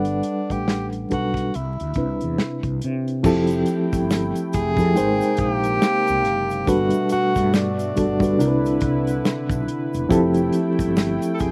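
A breathy tenor saxophone carries the melody up front with scooped notes and a smooth top, sitting over a reedy electric piano with fast tremolo and a round fretless bass in this slow, soulful neo-soul R&B excerpt at 70 BPM with a swung sixteenth feel in F lydian. A dry, dark soul drum kit with a tight kick and crash, hi-hat and snare keeps the groove. At 3.2 seconds a detuned, warbling analog pad with chorus arrives, and just after, egg shaker and finger snaps join quietly in the background. The chords move through Gmaj9, Cmaj9, Fmaj9 and Abmaj9, and the smooth outdoor sound carries little reverb and a layer of vinyl crackle.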